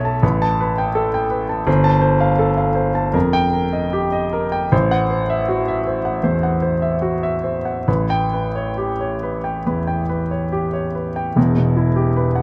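Close, detailed microphones and very little reverb place the grand piano up front, so its intimate, polished sound comes through with the noise of the action audible alongside the notes. This brief excerpt of impressionist solo piano in the classical tradition has a mysterious, wistful mood. The playing moves in 4/4 with a rubato feel, drifting between roughly 66 and 84 BPM, and the part reaches from E1 to A5. The harmony is built on open, suspended and extended chords, passing from Asus2 through G9sus4 and F9sus4 to Am6 and then A9. At 11.4 s the music turns to a new section on E minor, which the piano carries until the excerpt ends at 12.4 s.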